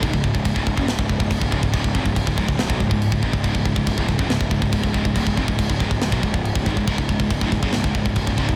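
A straight 4/4 pulse at 140 BPM drives this dark, relentless heavy metal passage on a C#5 chord, where an up-front, mid-forward acoustic drum kit with a big-room sound, crash cymbal, tight kick and medium-tuned snare pounds over a growly, fuzz-overdriven electric bass and several picked guitar riffs: a bright, scooped high-gain guitar in the background, a very quiet double-tracked crunchy overdriven guitar, and a second distorted high-gain guitar, also in the background, that joins at 6.9 s, with the whole mix kept dry in a dense, heavily limited modern master.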